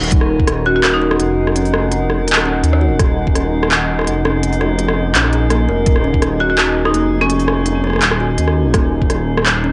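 Half-time drum and bass at 167 BPM in Eb minor, this tense, heavy clip from a longer piece sits on a single Ebmadd9 chord, with a rumbling detuned saw bass up front and a moody analog pad pumping under sidechain in the background, joined by an eerie, inharmonic metallic drone washed in chorus and reverb. A woody kalimba plays ringing arpeggios throughout while a hard-mallet marimba adds brief bright melodic figures at 0.7 and 6.4 seconds, both trailed by echo and delay. Overdriven drums drive it: a knocking electronic kick hits at intervals over crisp hats, handclaps and rim clicks, the whole lightly reverberant mix carrying the muffled, dulled top of a home cassette recording.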